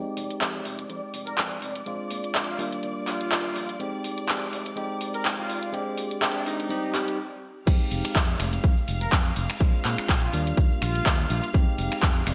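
Sensual and groovy, this 124 BPM filtered disco house excerpt in F dorian sets a bell-like tine electric piano with phaser, lush distant strings, a punchy fingered electric bass and an overdriven, up-front house kit of hi-hat, handclaps, finger snaps and cabasa, joined at 1.3 seconds by a mellow trumpet section's smooth melody, all pumping under sidechain through a filter sweep and build-up until a brief break at 7.2 seconds, after which a punchy overdriven electronic kick drives the drop at 7.7 seconds beneath the trumpets, over Fm7, Bb7 and Ebmaj7 chords in bright 1980s-style digital production.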